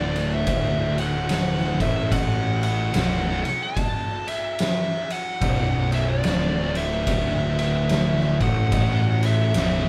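A band playing live in one large studio room comes across with a moderate reverb that gives this short stoner and doom metal clip a heavy, shared air. At 73 BPM in 4/4 with a swung eighth-note feel, the music sits on a single B minor chord, brooding and hypnotic. Two thick fuzz guitars grind out a low riff, one set in the background and the other very quiet, both picked and distorted. A growly, overdriven electric bass sits up front with a bright, direct amp tone. The oversized low-tuned drum kit enters at 0.2 seconds, dark, saturated and gritty, with a punchy kick, a fat snare and ride cymbal in a bright stone-room sound. Above the low end, a fuzz lead guitar carries the melody with a warm, picked tone.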